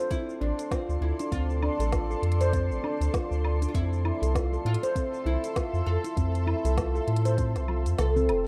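A round, deep analog bass sits up front with a sidechain pump in this mystical, organic downtempo excerpt, while a plectrum-plucked, woody oud carries the melody and a ringing handpan spins meditative arpeggios through tape echo and shimmer reverb. A cloudy, evolving granular pad holds bright sustained chords with 12-bit grit, pumping and shimmer, over a soft electronic kick and an organic electronic kit of woody snare, crisp hats, shaker, toms and woodblock with a lightly swung sixteenth feel. A drum fill arrives at 7.7 seconds and the kick drops out at 8.0, all in a warm, rough home-demo mix with light digital ambience.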